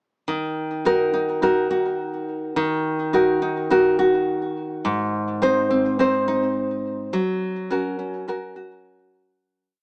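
Heard through a small-speaker sound and bathed in a moderate plate reverb, this intimate, autumnal folktronica piece features a lone nylon-string guitar, full-bodied and up front, fingerpicking a sparse, gently swung pattern over Ebm, Ab and Gb chords before fading out from 6.4 to 9.4 seconds.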